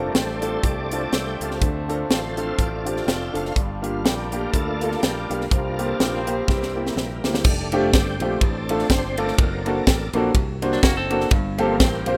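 Hopeful and reverent, this uptempo swung gospel excerpt features a bright, lightly overdriven tonewheel organ with chorus vibrato, key click and slow rotary speaker taking the lead over a clear, woody upright piano, a growly fingered electric bass and a crisp, up-front fusion drum kit with a high-tuned snare and punchy kick, while a muted, nasal French horn section holds distant chords until 7.4 seconds, a drum fill arrives at 6.5 seconds, and a twangy clean electric guitar adds a brief second line at 10.7 seconds in a rough demo mix with light studio reverb.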